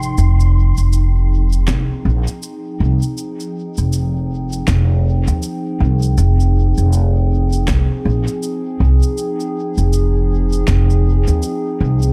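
Swung sixteenths in 4/4 give this ambient dub excerpt a slow, loping sway, with an overdriven electronic cabasa and woody snare sent through dub echo and a deep electronic kick sitting in the background from 1.7 s to 10.9 s. Up front, a dark, thumpy pizzicato upright bass carries the low end under a warbling, nostalgic pad that holds a single Fm7 chord with chorus and a slow attack. The mix is spacious and deep, heavy on echo yet dry of reverb overall.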